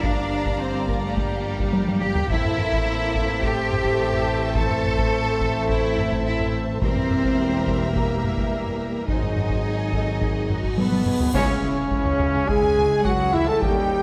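Hard-stick taiko drums drive this relentless, heroic cinematic orchestral cue at 106 BPM from the first beat, beneath lush, vibrato-rich violins carrying the melody and a focused second line, clear violas, bright trombones and mellow, close-miked French horns holding sustained chords, and intense bowed cellos with rich double basses on the bass, all set in a wet scoring-stage reverb, until a huge, dark cymbal swell arrives at 10.5 s, an airy, distant flute and soft-attack solo trumpet stabs join at 10.8 s, and the ensemble strikes an accent with the cymbal impact at 11.4 s.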